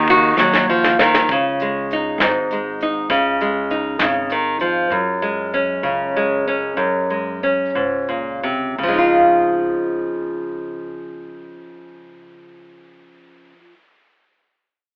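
Cut from a longer piece, this pastoral, peaceful acoustic folk passage in a gentle 6/8 opens with an up-front, fingerpicked classical nylon-string guitar, finger squeaks audible, over a woody pizzicato upright bass in the background, while a dark, smooth brush kit with a punchy kick and dark cymbals plays a fill from 0.4 to 1.3 seconds and drops out at 4.7 seconds, after which the music slows, all heard through a moderate studio ambience and a telephone-like sound.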